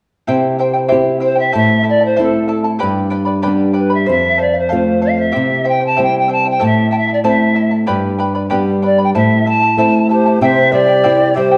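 Melancholic and wistful, this short Andean folk passage, cut from a longer piece, moves at 95 BPM in a straight 2/4, with fingerpicked charango, its doubled strings shimmering, and flamenco guitar, finger squeaks audible, laying down a C, Am, G and F progression from 0.3 seconds. A bright, reedy, polished pan flute carries the melody with soft-attacked vibrato from 1.2 seconds, and a breathy, mellow large quena with a hollow, chiffy tone adds a second line from 10.1 seconds. A recital hall reverb and a dark production surround the ensemble.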